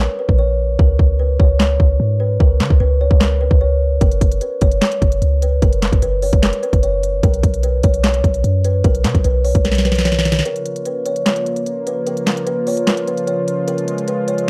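A woody, ringing kalimba melody opens this dark, eerie half-time trap excerpt over a deep, boomy 808-style sine bass and an up-front electronic kit of hard-clipped kick, sharp snare, crisp hi-hats and handclaps. During a drum fill beginning at 9.7 seconds the bass drops out at 10.4 seconds, and a detuned sawtooth pad with chorus enters at 10.5 seconds, holding soft, sustained chords beneath the kalimba and drums. The production is shadowy and close, set in a digital ambience.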